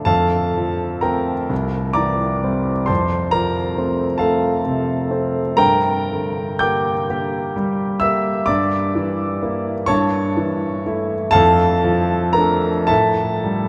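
A vast, echoing cathedral acoustic surrounds this recording, its wet reverb stretching each note into a long haze that takes 6.5 seconds to die away. At its centre sits a warm concert grand piano, close, intimate and up front, with deep bass, a polished tone, long sustain and the mechanical noise of its action still audible. This is a romantic classical nocturne for solo piano in 12/8, moving slowly at roughly 37 to 46 dotted-quarter beats per minute with a free, rubato feel. The mood is melancholic and yearning, as the harmony rocks from F to C7 and back before darkening through G minor, A7 over G and D minor over F. Spanning from C2 up to G6, the piano plays alone throughout this 13.7-second fragment of a longer piece, which breaks off on an unresolved A7 chord.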